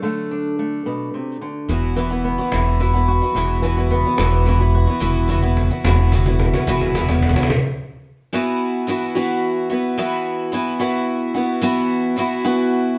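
A shimmering, octave-doubled twelve-string acoustic guitar, picked with audible finger squeak, accompanies this wistful, yearning indie folk excerpt in 6/8 at 72 BPM. It joins at 1.7 seconds, when the chords move from D to Esus2, over a dark fingerpicked steel-string guitar. A pizzicato upright bass sits up front with a warm, woody tone, and a distant cajon with faint snares plays a fill through the building arrangement. After a stop at 7.5 seconds, the twelve-string carries on alone in a lightly reverberant room that sounds like a band playing live.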